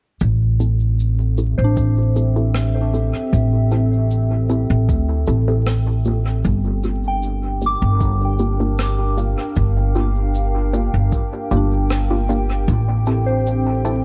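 A woody, pizzicato upright bass sits up front in this hazy, spacious ambient dub cut at 77 BPM, moving from Am7 to Gm7 at 6.4 seconds and back to Am7, over an overdriven deep electronic kick that drops out at 12.8 seconds and a brushed cabasa and rim click trailing dub echo. A muted, filtered sawtooth chord stab pulses through phaser and dub echo, while a dark, warbling tape-like pad holds nostalgic sustained chords with chorus. From 1.6 seconds a pure, gentle FM bell arpeggio glimmers through chorus, phaser and tape echo, all set in an echo-heavy mix with studio reverb and vinyl crackle.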